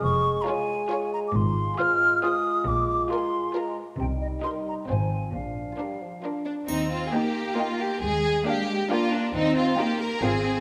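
Set in a wet scoring-stage reverb, this playful, whimsical film cue in Eb major moves at 136 BPM in a straight 3/4 and is cut from a longer piece. Up front, a pure, hollow flute with a crisp attack plays a second line above a mellow, vintage-toned French horn section holding sustained chords. Beneath them sit a lush, focused cello section and smooth double basses, while a dark, expressive violin melody with portamento drifts in the background against an even, close second violin line and rich violas. The flute and horns are gone by 6.7 s, where a brief, close triangle marks the arrival on Eb for the closing bars.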